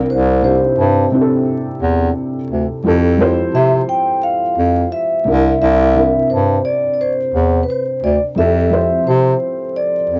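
From the first moment, a mellow, nostalgic hip hop groove opens with all three parts together: a vibraphone played with soft mallets carries the melody, a felt-muted upright piano supplies the accompaniment, and a breathy bass clarinet holds down the low end. The vibraphone sounds metallic and ringing yet dry and close, with its motor off, and a touch of cassette tape colour and analog delay trails its lines. The piano is dark, boxy and intimate, its thick felt giving a muffled, soft tone that also carries a cassette tape character. Up front in the mix, the bass clarinet is clear and punchy, played in a jazz style with vibrato and scooped notes. The harmony moves between C9 and Fmaj7 over a lightly swung sixteenth-note feel, and the whole piece sits in a small, booth-like room with vinyl crackle and a dulled, home-recorded cassette sound. This 10.2-second passage is cut from a longer piece.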